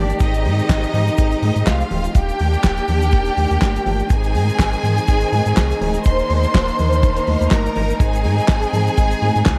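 Glamorous and celebratory, this short disco passage moves at 123 BPM in 4/4 with a light sixteenth-note swing, cut from a longer piece. A damped 70s drum kit sits up front with a dry, mid-forward sound, pairing a fat snare and tight kick with hi-hat and handclaps. Beneath it, a deep sub bass with an octave layer gives a full, sine-and-triangle tone with a fast attack and sustained notes. A rich studio string section holds lush bowed chords with vibrato, while a clear symphonic string section carries a second line higher up, biting and focused, touched by analog delay. Ringing, high-tuned congas with soft hands and a grainy, bright tube shaker sit in the background, and the harmony moves between Abmaj7, Ebmaj7 and Ab inside light reverb and small room ambience.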